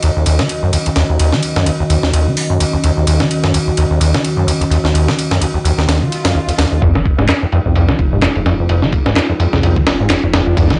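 Breakbeat fragment with a funky, gritty mood, where a compressed, pitched-up sampler-style break with a thumpy kick sits up front beside a squelchy, resonant, distorted acid bass riff and a deep, moody analog pad whose sustained chords pump under sidechain, until a very quiet swell and riser arrives at 6.1 seconds, a thick, beating detuned saw bass enters at 6.8 seconds as a filter sweep on the drums drives the build-up, and layered, overdriven electronic handclaps join at 7.3 seconds in a dry small-room recording.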